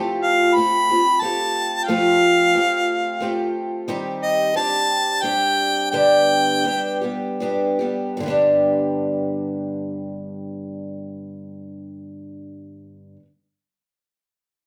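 Gentle and nostalgic, this short acoustic folk passage in a straight 3/4 at 72-90 BPM pairs a warm harmonica melody with light vibrato and a smooth top, heard up front from 0.2 to 7.4 s, over a woody, shimmering picked twelve-string acoustic guitar whose octave-doubled old strings carry the accompaniment through Fadd9, Cmadd9/Eb and G, with a slowing from 3.9 to 8.2 s before the guitar continues alone into a second section, all set back in a wet studio reverb.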